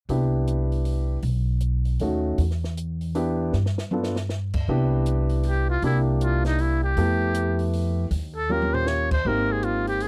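A dry, close recording with little reverb and a 1970s studio feel frames this short excerpt of small-group jazz in the swing and bop vein, moving at 157 BPM in a lilting 3/4 in C major. Piano, upright bass and a compact cocktail drum kit play together from the opening, with the grand piano comping in a narrow middle register, intimate and present, its action noise audible and its notes ringing with long sustain. The upright bass sits up front with a woody pizzicato tone, while the kit sounds natural and acoustic, pairing dark cymbals with a high-tuned snare and a punchy kick, and drum fills arrive around 3.5 and 8.5 seconds. The harmony moves from Cmaj7 through B7 and Em7 to G7, then shifts into richer colours such as Fmaj9#11, Eb9 and Abmaj9. At 5.5 seconds a trumpet with a metal mute enters as the soloist, buzzy and thin yet breathy and whispered, with a soft attack and light vibrato that give the swinging mood an intimate glow.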